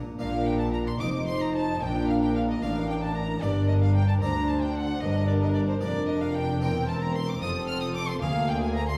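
A rich solo violin, smooth and even with vibrato, leads this lively, brilliant baroque-style concerto movement in Bb major, doubled on the melody by a studio violin section with a smooth top. It moves in a straight 6/8 at 75 dotted-quarter beats per minute, with a focused, close second violin section holding a second line beneath the melody. A distant, lush viola section and a close cello section in the background fill out the middle and bass, while a clear, intense chamber double bass section anchors the lowest register. A dry, close-miked harpsichord of the Flemish type, full and brilliant with octave strings, sits behind the strings, starting alone at 0.0 seconds before the others join at 0.2 seconds. The harmony moves from Bb through Gm toward C7/E, F and Bb7/D, and the whole is heard from further back in a wet recital hall, in a passage cut from a longer piece.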